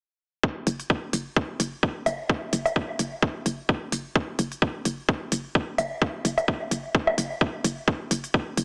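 Lightly reverberant and heard as if through a small speaker, this short cut from a longer minimal techno piece moves at 129 BPM in 4/4, with a 55% swing on the 16ths giving it a quirky, hypnotic sway. A tight, tape-warm electronic kick drum enters at 0.4 s, sitting up front with the sense of a large room around it. Just after, crisp layered hi-hats and a hollow, knocking FM bass join. The bass is bouncy and dark, with a fast attack and decay, and it pumps with sidechain compression. An overdriven analog woodblock, placed in a small room and trailed by a diffuse ambient delay, pops in at 2.1 s and again at 5.8 s to add an odd, playful accent.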